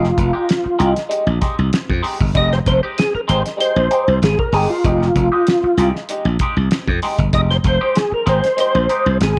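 Funk in F minor at 96 BPM, this driving, cool excerpt sits on a single Fm9 chord for its roughly 9 seconds. A round, dark tonewheel organ carries the melody up front with percussive attack, chorus vibrato and a slow rotary speaker, while a twangy, clean electric guitar comps underneath through wah and phaser. A glassy, growly slap bass and a cloth-damped drum kit with a fat snare, tight kick and rolled-off top drive the groove, all in a small, lightly reverberant room.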